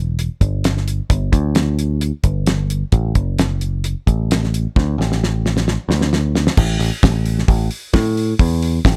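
A picked electric bass opens this short folk rock and heartland rock excerpt, its dark, round tone sitting up front in a straight 4/4 with a warm, open-road mood. At 0.2 seconds a damped 70s drum kit joins, dry and close, with a fat snare, tight kick, hi-hat and dark crash cymbals. A drum fill from 4.8 to 6.6 seconds leads into a new section, all in a close, nearly reverb-free sound.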